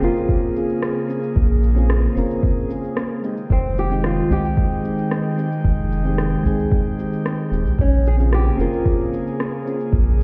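The recording sounds muffled, as if heard through a wall, with stone-room reverb and a digital ambience around it. This short sunset chillout excerpt moves at a relaxed 112 BPM in a straight 4/4, with a mood that feels easy and warm, and the harmony shifts from Bbm7 to Fm9 at 3.2 seconds before returning to Bbm7. A small, fingerpicked nylon-string guitar carries the melody through a tape echo, set over soft electric-piano-like synth keys that sound mellow and decaying, touched with chorus and tape echo. An airy, breathy pad holds sustained chords with a slow attack, long release and a noise layer, sounding bright overall. The round analog bass sits deep, dark and up front with tube saturation. An electronic shaker and rim click play from the start, while a soft, overdriven electronic kick enters at 0.3 seconds, both re-recorded in a small room.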